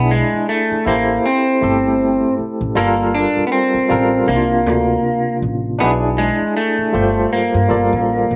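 Sultry and smooth, this short neo-soul R&B fragment in a swung 4/4 sets a slightly broken-up, lo-fi electric guitar melody through a small old amp over a bright, barky tine electric piano with fast tremolo and slapback echo, both up front, while a woody, thumpy pizzicato upright bass on gut strings anchors chords like Am7, Gm9 and C9sus4 in a dry outdoor sound.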